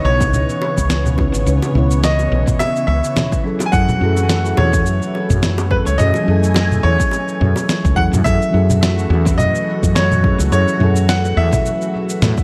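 A relaxed, warm sunset chillout cut drenched in echo, set in a moderate echo-chamber space that lets every delay trail hang in the air. At 106 BPM in 4/4 with a lazy swing on the sixteenths, a deep, overdriven electronic kick comes in at 0.2 seconds alongside gritty, sampler-style cabasa, congas and a fat snare, while tight, high-tuned bongos sit in the background until 8.2 seconds. Up front, a woody fretless electric bass with a round, hollow-bodied tone and tube saturation anchors the low end. A mellow FM electric piano with chorus and a cassette-tape haze supplies soft, decaying accompaniment alongside a lush, detuned unison pad that sustains the chords through chorus and phaser. Over the top, a bright, brilliant grand piano carries the melody with long sustain and analog delay echoes. The harmony moves from C#m9 to F#m9 at 3.4 seconds, and the passage shifts into its second section at 8.3 seconds.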